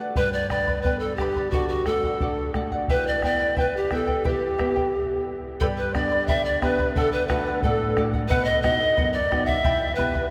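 A straight 2/4 pulse at 89 BPM from a round bombo drives this wistful yet festive Andean folk passage in E minor, where the shimmering double strings of a fingerpicked charango and a classical nylon-string guitar support a breathy, bright bamboo pan flute up front with vibrato, a soft attack and chiff; after a brief stop at 4.9 s, a distant, reedy large quena enters at 5.6 s as a second line, all bathed in a lingering cathedral reverb.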